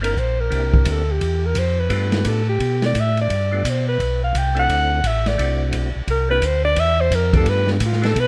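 A brisk swung eighth-note feel in four drives this soulful soul jazz organ trio fragment, cut from a longer piece. The open jazz drum kit sits in a small room with dark cymbals on ride and hi-hat, a medium-tuned snare and a boomy kick, its rolled-off top keeping the groove smooth. Underneath, a mellow tonewheel organ carries the bass line up front with a round, clean tone, key click and slow rotary speaker. A second, percussive tonewheel organ plays melody lines lower in the mix, lightly overdriven with third harmonic percussion and chorus vibrato turning through its slow rotary speaker. Across the whole passage an alto saxophone solos up front, mellow with subtone, soft attacks, scooped notes and a gentle vibrato, over chords moving from C9 to G9 to D9 and back. Light studio reverb wraps a rough home demo mix.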